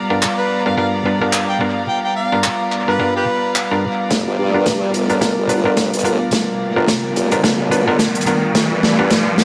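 Glitch hop excerpt with a gritty, funky mood, where a moody, detuned analog pad and soft, bowed chamber strings pump beneath overdriven, muted clav stabs and an airy, up-front swinging big-band kit with handclaps and snare, while a jazzy harmonica solo full of vibrato and tongue slaps leads until 3.6 s; from 4.1 s a saturated sawtooth formant wobble bass and a tight electronic kick in the background join a drum-fill build-up, an electronic riser enters at 6.0 s, and the mix is steeped in spring reverb, heavy echo and vinyl crackle.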